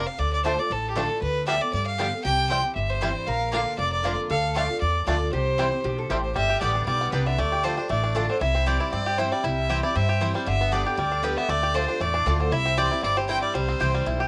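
A clear, focused fiddle with light vibrato carries the melody up front in this lively, virtuosic bluegrass excerpt, over a thumpy, woody upright bass, a full-bodied dreadnought guitar with finger squeak, twangy banjo arpeggios entering at 0.5 seconds, background mandolin stabs, and a nasal slide resonator line from 2.2 to 6.3 seconds, with every part but the bass carrying cassette-tape grain in a small, damp home booth.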